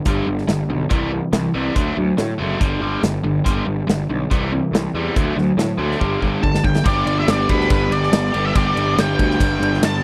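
Sunny and confident, this 141 BPM classic rock excerpt in G major sets a biting, double-tracked overdriven guitar riff over growly fuzz bass and a big, punchy drum kit with bright cymbals, cycling through G, C and D in a dry, close 1970s-style room until a drum fill at 6.0 seconds and an octave-fuzz lead guitar entering at 6.4 seconds with slapback echo.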